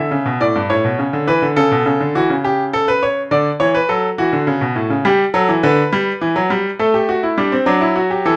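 Joyful and elegant, this short cut from a longer baroque-style two-part invention for solo grand piano moves in 12/8 at 69 BPM (dotted quarters), with a straight feel. The piano sounds bright, brilliant and open, with short sustain, and sits up front across its G2 to E5 range through the whole 8.4 seconds. Light reverb and a dark production frame the harmony as it passes from E7(no3) through A, D and G before landing on A7(no3) at 6.8 seconds.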